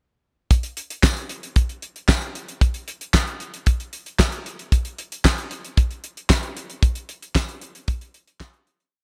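A dry, up-front 70s drum kit opens at 0.5 seconds with a four-on-the-floor boogie beat at 114 BPM, its tight kick and fat snare layered with handclaps over hi-hat, the top end rolled off. A jingly, band-limited tambourine joins in the background at 1.0 seconds, marking the backbeat in this slick, late-night funk breakdown. The bright 1980s-style digital sound carries little reverb, and the piece fades out from 6.8 seconds.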